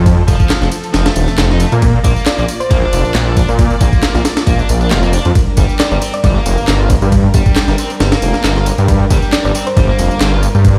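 A swung breakbeat groove drives this gritty, energetic cut, with a compressed, sampler-style kit of thumpy kick, high-tuned snare and ride sitting up front, layered with an overdriven electronic garage kit of handclaps, ride and tambourine, while a thick, menacing detuned saw bass holds the low end over chords moving from F to Bb to G minor. A bright, double-tracked distorted electric guitar picks out a riff with tube saturation and digital delay, as a bowed string section sustains smooth vibrato chords in the background, pumping under sidechain compression. From 2.3 seconds, a round, tine-like synth pluck with a vintage cassette-and-record warble adds brief, dark melodic phrases, all heard through the stone-room reverb of a big sound system in a bare room.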